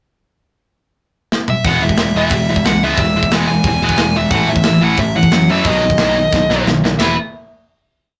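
A rough rehearsal-room recording with tube saturation and a moderate small-room reverb gives this short, complete punk rock piece a raw, close-up feel, energetic and upbeat at 179 BPM in E major. After a pickup bar, the tight metal drum kit comes in with a fill at 1.3 seconds, its medium-tuned snare and tight kick sitting up front with a rolled-off top as it drives a fast punk groove across hi-hat, ride, toms and snare. The overdriven picked electric bass pushes steady eighth notes down low, while the tight, bright, double-tracked distorted guitar hammers palm-muted eighth-note riffs and stands loudest in the mix. Above them, a dark, smooth, overdriven lead guitar states short motif-based phrases in a narrow high register. The verse moves from E through A5 and B, and a second drum fill at 6.3 seconds leads into a final E chord at 7.0 seconds that rings out to close the piece.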